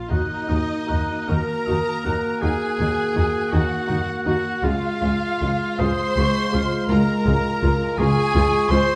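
A lush violin section carries the vibrato-laden melody in this bittersweet, moving cinematic fragment in a rubato 6/8, sounding together with a bright, present solo clarinet and a smooth, distant second violin line, while an airy flute floats high above, dark violas accompany and a loose, mellow French horn section holds sustained chords beneath, and deep double basses with expressive cellos sliding in portamento anchor the bass as the harmony shifts from Ebm to Db at 4.6 seconds, all set in the moderate reverb of a scoring stage.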